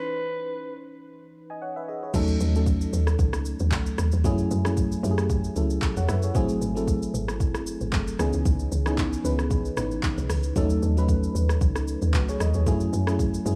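Swung sixteenths at 114 BPM in 4/4 set up this soulful, deep amapiano passage in C# minor, opening with a filtered break where a raspy, growling alto saxophone with tape echo sounds briefly until 0.8 seconds over a round, chorused FM electric piano. At 2.1 seconds the drop arrives as a woody, punchy log drum bass and an overdriven, up-front R&B kit of soft kick, hi-hat, handclaps, rim click, shaker and crash join in. The piano carries rich chords such as C#m9, D#m7b5 and G#7b9b13, with a gritty, dry hardware character and small-room ambience.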